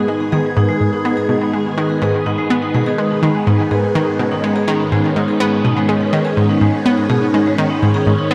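Cosmic and expansive, this short passage cut from a longer piece of ambient, sequencer-driven space music moves at 124 BPM in a straight 4/4, resting on a single G# minor chord throughout. A swirling, vintage phased string machine holds sustained chords from the very start, its soft attack and long release colored by ensemble chorus and phaser, and it sits bright and up front in the mix. From 0.1 seconds an analog pluck joins with a riff, its round, detuned tone built from sawtooth and pulse waves with a noise layer, a fast attack and short decay, treated with chorus and tape echo. Alongside it, a vibraphone played with medium hard mallets and the motor off traces arpeggios, its metallic, ringing sound close-miked and full, with tape echo trailing its notes. A moderate plate reverb and a dark production wrap the whole texture in a spacious, cosmic atmosphere.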